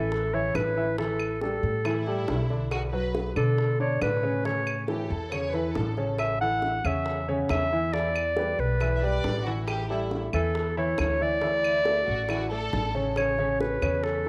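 A clear, smooth-topped clarinet carries the melody up front over arpeggios from a warm baby grand piano and a thumpy, woody pizzicato upright bass, opening this relaxed Cuban son and guajira excerpt at 138 BPM, with the clarinet touched by analog delay. Tight, high-tuned bongos sound distant in a large room, while claves click from a live room. A rich, intimate violin section bowing sul tasto with light vibrato adds a soft-attack second line at 1.9 seconds and again at 9.0 seconds, all under light reverb and the small-room haze of a home cassette recording.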